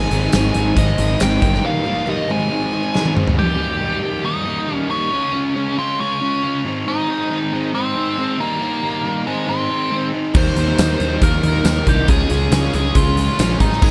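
A nasal lead guitar with a parked wah and overdrive sings the melody up front over a crunchy, double-tracked riff guitar with slapback echo, a thick fuzz guitar set back in the mix, growly fuzz bass, a reedy electric piano, a very quiet picked steel-string acoustic with finger squeak, and a huge arena drum kit with bright cymbals, punchy kick and a pumping hall sound; the bass drops out at 1.6 seconds for a break capped by a drum fill, the two guitars carry on alone from 3.4 seconds, and the rest of the band returns at 10.3 seconds in this swaggering, driving classic rock excerpt.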